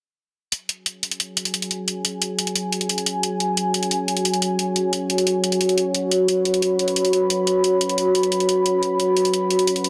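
A dark analog pad dominates this short slice of dark technical drum and bass, sustaining deep, moody chords built from detuned sawtooth and triangle tones with a sub octave beneath and a chorus effect giving it a full-bodied sheen. The pad fades in on a slow attack at 1.4 s and holds up front through the end, sitting over an F#sus2 harmony. An electronic hi-hat opens the passage at 0.5 s, its layered, produced, bright hats re-recorded in a small room and placed close to the listener. The tempo is 177 BPM in a straight 4/4, tuned to A4 = 442 Hz, and the mood is mechanical and futuristic. A lush hall reverb lends a moderate digital ambience, while the dense, heavily limited modern master keeps the sound tight and forceful.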